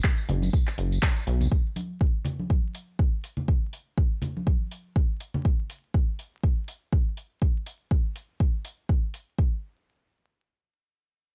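A moody, late-night deep house cut at 122 BPM with a light 16th-note swing opens on a deep, tape-warm electronic kick up front, layered handclaps and metallic hi-hats, and a jingly tambourine that stops at 1.5 s, while a rubbery, hollow square bass with a resonant filter pluck and sidechain pumping sits briefly between F#1 and B1, and thick-skinned, hard-hand congas play until 5.4 s, the dry mix carrying a layer of vinyl crackle.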